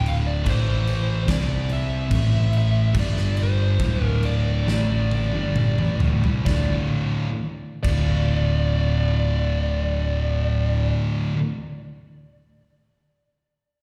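Brooding and sludgy, this stoner and doom metal excerpt in D minor crawls at 65-74 BPM, slowing over its opening 6.5 seconds as a big, airy, polished rock kit with bright cymbals and a punchy kick plays a fill before dropping out at 8.1 seconds, while an up-front amped electric bass and two picked fuzz guitars, one forward and one in the background, grind out the riff alongside a very quiet double-tracked crunchy guitar, and a dark, compressed fuzz lead carries the melody through slapback echo and digital delay, all heard through a live venue PA with recital hall reverb before settling on D minor.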